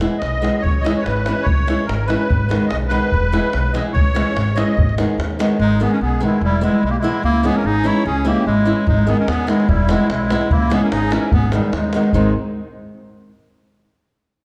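Driving in a swung 2/4 at 146 BPM and gathering speed throughout, this fiery, restless Balkan wedding-band fragment in G# harmonic minor rides on a tight davul, a woody pizzicato upright bass and an up-front, fingerpicked flamenco guitar with fresh strings, cycling through E, C#m and G#m. A reedy, shimmering musette accordion with a vintage, band-limited tone takes the solo for the first 5.6 seconds, after which a bright, classical-style clarinet leads up front while the davul drops out until 8.9 seconds. The dark, warm production sits in a wet recital-hall reverb.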